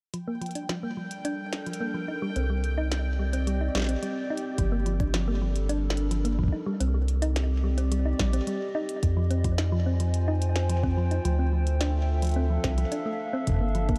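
A dark, lightly reverberant and intricate IDM excerpt, in which a tine-like, nasal FM pluck plays gentle arpeggios through chorus, cassette tape and delay under a filter sweep until 4.6 seconds, alongside a bubbling, resonant stepped-filter texture, while a warbly, detuned tape-like pad holds nostalgic, vintage chords, a glitchy drum kit of clicky hats and a tiny snare ticks in small-room ambience with delay, a round analog bass with tube saturation arrives up front at 2.4 seconds, and a deep electronic kick drum enters at 4.6 seconds.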